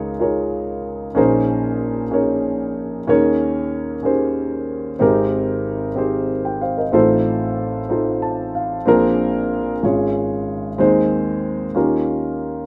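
A 6/8 pulse at 62 BPM, counted in dotted quarters with a straight feel, carries this short gospel passage in Ab major, cut from a longer piece. A dark concert grand piano plays solo throughout the 12.7 seconds, ranging from Ab1 up to A5, its tone mellow and smooth with deep bass and a vintage character, and the audible action noise draws the listener close. The harmony moves through rich extended chords, from Db69 and Bbm11 to Eb7sus4 and Abmaj9, then on through F7/A and Bb9 before settling toward Ab/Eb and closing on Eb9. A brief piano fill between 7.9 and 8.9 seconds bridges into the later chords. Set up front in a moderate small room with a short reverb, the rough home demo mix feels intimate, and the mood is jubilant and hopeful.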